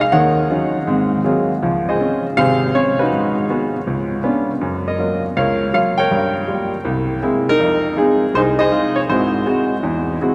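A clear baby grand piano opens this solo jazz piece alone and carries it for the full 10.3 seconds, swinging its eighth notes at a brisk 161 BPM in 4/4 with a cool attitude. The instrument sounds intimate and natural, placed up front, with the mechanical noise of its action audible beneath the notes. Its playing spans from a deep Ab1 up to G5, moving through a rich progression that starts on Ebm9 and Ab13, settles on Dbmaj7, then passes through Abm7, Db7b9 and Gbmaj7 before darkening with Gm7b5 and C7alt on the way to Fm7 and a closing Abaug7. The piano is tuned slightly below standard pitch, with A4 at 436 Hz. A long, wet cathedral reverb from a church or concert hall surrounds the close piano with a lingering glow, and the passage is cut from a longer piece.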